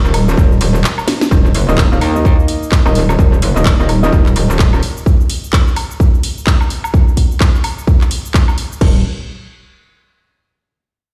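A swung 128 BPM bass house groove in 4/4 and Eb minor drives this gritty, aggressive cut from a longer piece, opening on a drop with a short break and a drum fill at 1.1 seconds. A metallic, saturated FM wobble bass with chorus and sidechain pumping plays from the start until 4.8 seconds, returning briefly at the very end. A punchy, up-front electronic kick and a garage kit of cracking snare, hi-hat, handclaps, cabasa, woodblock, ride and crash join within the first half-second and carry the main section. A dark, mellow grand piano adds stabs with vintage 12-bit sampler grit and tape echo from 1.7 to 4.1 seconds, all heard dry in a bare stone room through a big sound system.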